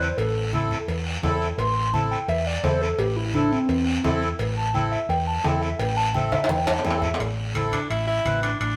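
A hollow, woody synth lead with a clarinet-like tone carries the melody of this passionate, driving cumbia in A minor, its soft, mellow line lifted by chorus and vibrato and ranging from C4 to C6 until 7.2 seconds. Beneath it, a reedy accordion with slow beating holds a dark, smooth accompaniment on A minor, while a round, punchy hollow-body electric bass sits up front at 171 BPM in a straight 4/4. The percussion blends a raspy, band-limited guiro, thick-skinned, low-tuned congas set in the background, and ringing, saturated cowbell and timbales, with a fill arriving just before the lead drops out. At 7.7 seconds a distant, roomy tenor saxophone takes over with a short, warm, vibrato-laden solo in a pop style. The band plays live together in a stone room whose wet reverb gives this excerpt a lively, enveloping space.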